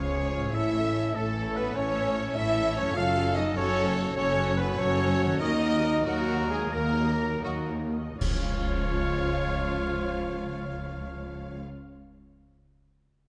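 A soaring, adventurous passage from a heroic film score, cut from a longer piece and moving in a lilting 12/8 that slows down from 3.8 to 8.2 seconds. A lush violin section carries the melody with expressive vibrato and a soft attack, while clarinet, a distant oboe and a second, smoother violin line weave supporting lines, and the violas fill in the accompaniment. A mellow, roomy French horn section holds sustained chords, joined quietly by a tight, vintage-toned trombone section. A ringing, fingerpicked concert harp plays very quiet arpeggios, a clear trumpet adds stabs, and a woody cello section and a rich double bass section with portamento anchor the low end. At 8.2 seconds the harmony returns home to Db and the full ensemble hits an accent, punctuated by bright clash cymbals and concert bass drum that sound only until 9.2 seconds. Moderate concert hall reverb gives the whole ensemble a spacious, cinematic bloom.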